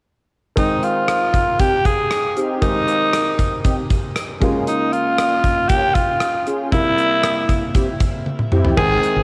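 A straight 4/4 pulse at 117 BPM drives this glossy, nostalgic 1980s-style pop excerpt in Ab major, with a gated drum kit up front, its punchy kick and bright cymbals ringing in a stone-room sound, while a raspy, gritty alto saxophone carries the melody with scooped notes over a clear concert grand piano moving through Abmaj7, Bbm7 and C7. Mellow, detuned synth brass stabs sit in the background with chorus from 1.6 seconds, and both piano and saxophone bloom in shimmer reverb. After a drum fill at 8.3 seconds, a round, woody fretless bass enters on a low Ab at 8.8 seconds, all within a lush hall and the soft haze of a home cassette recording.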